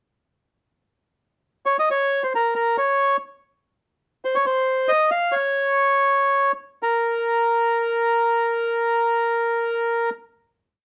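A reedy, vintage-toned bandoneon plays alone and up front from 1.7 seconds, shaping a nostalgic, bittersweet musette in a rubato triple metre with a motif-based melody built in sentence-like phrases. The phrase slows down from 4.0 seconds before settling onto a final note held from 6.8 seconds to the close of this short whole piece. The band-limited instrument sits in a dark production with moderate studio reverb.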